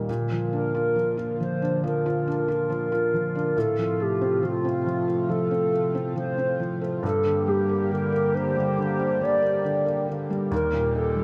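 A moderate plate reverb surrounds this hopeful, emotional pop excerpt with an intimate glow. At a slow 69 BPM in 4/4 with a straight feel in F major, a felt-muted upright piano carries the accompaniment from the start. It has a thin-felt, vintage tone with audible action noise, and it sits up front. Beneath it, a chorused pulse-width pad holds sustained chords with a shimmering, retro character and a slow attack. At 0.6 seconds a hollow, clarinet-like synth lead enters up front with the melody, its woody, mellow voice carrying a noise layer, vibrato and chorus. The harmony moves from Bb through F/A and Gm to Eb.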